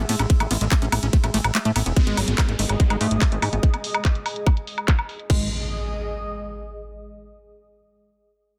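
A tight, up-front electronic kick drives this psychedelic trance excerpt at 144 BPM, briefly dropping out just before the shift at 2.0 s. Beneath it, a punchy, funky analog bass with tube saturation anchors the low end while a squelchy, resonant acid riff with dub echo pumps. A garage drum kit adds filtered hi-hat, handclaps, woodblock, crash and ride, and a filter sweep runs over the drums through the middle section. An evolving wavetable pad with phaser holds chords in the background until 2.0 s, an airy, breathy pad lends mellow texture throughout, and a downlifter and impact sink behind the dense, heavily limited mix for an alien mood.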